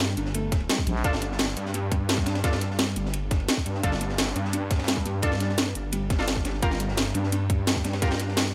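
A faint mains hum and a light small-room reverb surround this aggressive, mechanical slice of dark technical drum and bass, cut from a longer piece. An overdriven electronic kick and a second overdriven kit with a cracking snare and bright hats hit up front, while a gritty, high-tuned breakbeat kit with a rolled-off top sits in the background, and a thick, chorused detuned saw bass carries the low end, joined at 0.9 seconds by a brief growling FM bass note. A boxy felt-muted upright piano plays pumping, echoing arpeggios in the background from 0.2 seconds, and from 1.0 seconds a punchy, ring-modulated orchestra-hit-like synth stab cuts through with its own reverb and dub echo.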